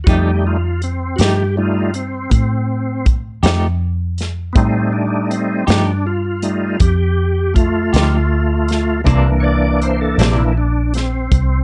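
Rollicking yet laid-back, this slow blues excerpt in 12/8 moves at 53 BPM, shifting from an F9 chord to C9 at 9.1 seconds. A reedy, lightly overdriven tonewheel organ carries the solo with sustained chords, key click, chorus vibrato and a slow rotary speaker, while a foam-muted, round vintage electric bass sits up front beside a natural country drum kit with a punchy kick, medium-tuned snare and hi-hat. A clean, twangy electric guitar with tremolo adds picked accompaniment until 10.4 seconds, all set in light reverb with a dark production.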